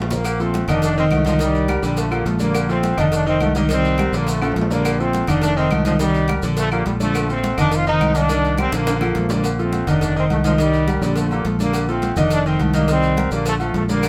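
Festive and joyful, this salsa excerpt moves at a brisk 209 BPM in Bb major, with a bright, punchy trombone section carrying the melody up front over a clear concert grand piano with deep bass and a round fingered electric bass cycling through F7, Cm7 and Bbmaj7. Behind them sits a percussion bed of thin-skinned congas, low-tuned bongos with cowbell, ringing metal-shell timbales with agogo bells, grainy maracas and woody claves, which drop out at 9.2 seconds and return only at 14.0 seconds. The band plays live in one room with moderate studio ambience, and drum fills mark the phrase turns around 4.4 and 8.7 seconds.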